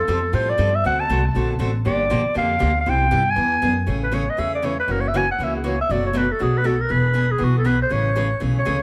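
A growling, raspy clarinet with vibrato carries the melody over woody, thumpy pizzicato upright bass and a boxy, picked parlour acoustic guitar in this lively, swinging excerpt of acoustic string swing at 238 BPM, moving from F major into A major at 3.9 s, where the clarinet, treated with plate reverb and tape echo, takes a gritty solo in a moderate club room.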